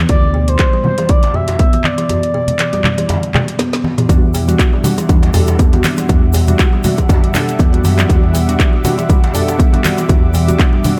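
This hypnotic, driving afro house excerpt in E minor at 120 BPM opens with a plucked, hollow-sounding kalimba playing arpeggios in the background, alongside a brief burst of dark detuned saw bass, deep and rumbling with tube saturation and sidechain pumping. A punchy, overdriven electronic kick sits up front, joined by an afro-pop drum kit of handclaps, metallic hi-hats, toms and a woody snare, while ringing congas and a tight, cracking djembe with hard hands sit further back over swung 16ths. A mellow, expressive synth lead with vibrato, chorus and dub echo carries the melody over a D7 chord until 3.6 seconds, as a drum fill closes a short break. At 4.1 seconds the bass returns under an Em9 chord, a soft-attack sawtooth pad with chorus holds sustained chords, and round, detuned analog keys play decaying stabs with a filter sweep and dub echo. A grainy, bright tube shaker adds a compressed, saturated texture in the background, all set in a small room reverb.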